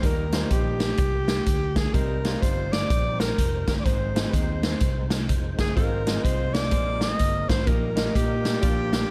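A swinging 4/4 groove at 126 BPM drives this short, jubilant uptempo gospel excerpt in Eb major, with a big-band drum kit sitting up front, its punchy kick and medium-tuned snare ringing in a big room alongside a round, amped fingered electric bass. A breathy alto saxophone carries the melody with subtone, vibrato and scooped notes over a clear, intimate concert grand piano whose action noise and long sustain come through its plate reverb. At 1.9 seconds a very quiet tonewheel organ slips in with percussive, key-clicking chords through a fast rotary speaker, as the harmony moves from Eb through Cm, Ab and Fm/Ab to a hopeful Bb9sus4 before settling on Eb/Bb.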